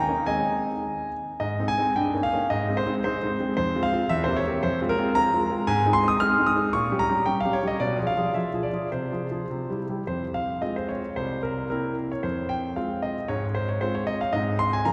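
A clear, intimate grand piano opens this classical-period sonatina in Ab major, playing solo in 2/4 at a rubato 103-116 BPM. The mood is restless and serious as the music turns toward F minor from 5.7 s, with a new passage beginning at 10.1 s. The piano sits up front with audible action noise and long sustain, surrounded by a wet church reverb, and the recording is cut from a longer piece, ending at 14.9 s.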